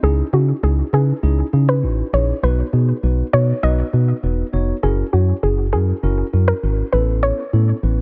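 A hollow, organ-like FM bass sits up front from the opening beat, its dark, percussive notes decaying beneath a clean, mellow tine electric piano and a soft, round pluck melody thickened with chorus and tape echo. This dance-pop passage, cut from a longer piece, moves at 100 BPM in a straight 4/4 in C# minor, carrying a bittersweet yet confident mood through C#madd9, B, F#7 and Aadd9. The sound is dry, with little reverb.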